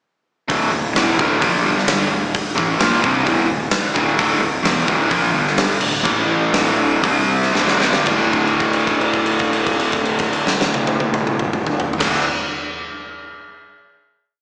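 Hard rock with a driving, aggressive mood, moving at 112-131 BPM in a straight 4/4, built on a bright, double-tracked power-chord riff from an overdriven semi-hollow guitar, doubled by a dark, round fuzz bass playing driving eighth notes while a big acoustic rock kit with a tight kick and rolled-off top pounds out a big groove. The tempo slows from 4.2 to 8.1 seconds, a drum fill leads into a final chord at 8.1 seconds, and a note is held until 12.0 seconds. The whole piece sounds like a live gig heard through a venue's PA, with club and recital-hall reverb and a small-speaker quality.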